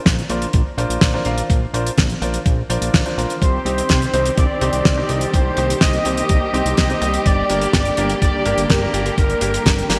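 Bright 1980s-style digital production with a lush hall reverb frames this melodramatic, danceable italo disco excerpt, where a thumpy sampled electronic kick and a dry, up-front 70s kit with a fat snare and hi-hat drive a thick, detuned sawtooth analog bass with a filter sweep. A brilliant, intimate baby grand piano plays stabs with audible action noise, washed in digital delay and shimmer reverb, over chords moving from Bbadd9 to Cm and Gm. At 3.4 s, a bold, brassy analog synth lead with chorus and vibrato takes the melody while a smooth, expressive bowed string section enters with sustained chords.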